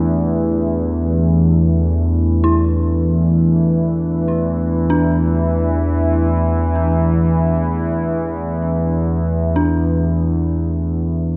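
Soaked in spring reverb and heavy echo, this ominous, vast dark ambient drone excerpt is anchored by an up-front analog drone, a warbling, evolving sawtooth and pulse-wave tone with chorus. Behind it, a deep, moody analog pad holds sustained chords in the background and fades out across the passage. From 2.4 seconds an eerie, inharmonic FM synth bell adds decaying arpeggios through chorus and analog delay.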